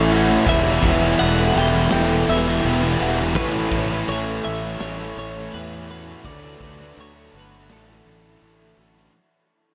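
Blissful and dreamy, this 83 BPM shoegaze and dream pop excerpt in A mixolydian fades out throughout as a shimmering, octave-doubled twelve-string acoustic guitar picks chorused arpeggios beneath three riffing guitars (a raw, lo-fi garage guitar with reverse reverb, a dark fuzz guitar and a very quiet, double-tracked distorted one), while a round, punchy fuzz bass sits up front, a gated 80s drum kit with bright cymbals drives from 0.1 seconds, and a clean, compressed twelve-string electric guitar carries a delayed melody from 0.5 seconds, all bathed in a huge ambient reverb over chords moving from Em through Aadd9 and D6 to Asus4.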